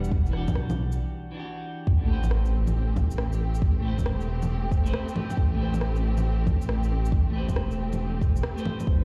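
A dark, detuned saw bass rumbles up front in this ghostly, wistful future garage excerpt at 137 BPM in A dorian, its saturated, beating tone pumping against a deep, layered electronic kick, while an electronic shaker, rim click and bongos fill out the swung groove. A clean, picked electric guitar with subtle chorus and analog delay and a lush, bowed studio string section with vibrato hold Em9 harmony, shifting to Am9 at 1.9 seconds after a short break. That change lands on an impact, with a very quiet sub drop from 2.0 to 3.6 seconds, all set in a dry, cassette-tinged sound.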